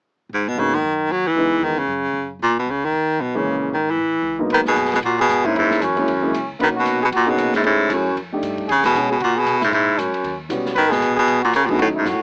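Swinging in a cool small-group bop vein, a bright, punchy baritone saxophone carries the melody up front with scooped notes and light vibrato over a woody, thumpy pizzicato upright bass and a natural baby grand piano, before a mellow, vintage-toned trumpet and an airy drum kit with dark cymbals and a boomy kick join at 4.5 seconds, all heard through the lo-fi haze of a home cassette recording that closes on a drum fill at 12.1 seconds.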